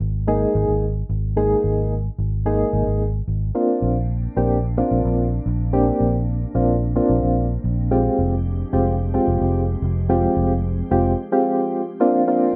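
Bittersweet yet confident, this pop passage moves at 110 BPM in a straight 4/4, cut from a longer piece and captured as a rough home demo in a small room with a moderate ambience. A vintage muted fingered electric bass sits up front, dark, round and punchy with its foam-muted, amped tone, holding the low end from the start until it stops at 11.1 seconds. Soft electric-piano-like synth keys enter almost immediately, mellow and gentle with a fast attack and decaying notes, coloured by chorus and tremolo as they carry the accompaniment. From 3.9 seconds a glassy FM pad joins beneath them, ethereal and slow to bloom, its sustained chords trailing long releases through ensemble chorus and built-in reverb. The harmony drifts from Absus2 to Bbadd9 and then Fmadd9 before returning to Bbadd9, giving the open, added-tone chords a wistful colour.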